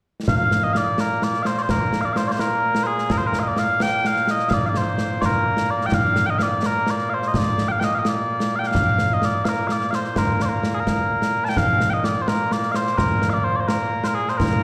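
A mellow, sweet small bagpipe carries a continuous, stirring melody up front with a slapback echo, backed by close, dry concert snare and bass drum with bright cymbals, in this proud Scottish pipe excerpt in 6/8 at 85 BPM in Bb major, heard live through a venue's PA with light recital-hall reverb from 0.3 to 14.6 seconds.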